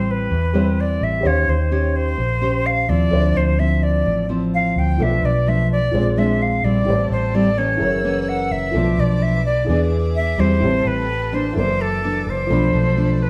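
Bossa nova in A minor at 128 BPM, wistful and intimate, where an airy silver concert flute with crisp attack and unsteady vibrato carries the melody up front in plate reverb over fingerpicked nylon-string guitar with audible finger squeak, a baby grand piano heard in the background with action noise, and a dark, round, foam-muted electric bass, while a chamber string section enters at 6.9 seconds with soft sul tasto chords, all set in a large studio room heard from further back, cut from a longer piece.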